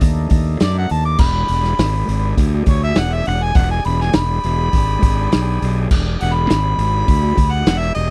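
A straight 4/4 groove at 102 BPM drives this gritty blues rock and southern rock power-trio excerpt, with a punchy, up-front vintage drum kit of kick, snare, hi-hat and crash cymbal, its dark cymbals and rolled-off top sitting in a small room, under a growly, overdriven fuzz bass played with the fingers. An overdriven tonewheel organ holds thick sustained chords through a slow rotary speaker, moving from B7#9 to E7#9 at 1.2 seconds. From 0.6 seconds a warm, overdriven harmonica takes a jazz-style solo with light vibrato, scooped notes and a smooth top, all captured in a dry, close 1970s-style studio sound.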